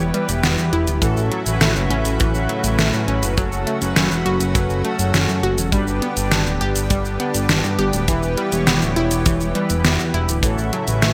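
A bright, 1980s-style digital production sits in a moderate plate reverb, giving this nostalgic, moody synthwave excerpt a polished sheen at a straight 102 BPM in 4/4. A lush, airy unison pad holds detuned sawtooth and square-wave chords with a soft attack, chorus and sidechain pumping, while a fat, saturated analog bass sits up front beneath it with the same pumping. In the background, a round analog pluck plays arpeggios with a short decay, ring modulation and a filter sweep, colored by chorus, cassette tape and delay. A mellow, brassy synth brass adds dark stabs with vibrato, chorus and delay across a span from A2 to D5. The pop drum kit enters at 0.1 seconds, placing hi-hat, shaker and a deep, overdriven snare up front in gated reverb, and a tight, mid-forward acoustic kick joins at 1.0 seconds and drops out at 10.5 seconds. The harmony moves through Em, A6, F#m and G before returning to Em and A6.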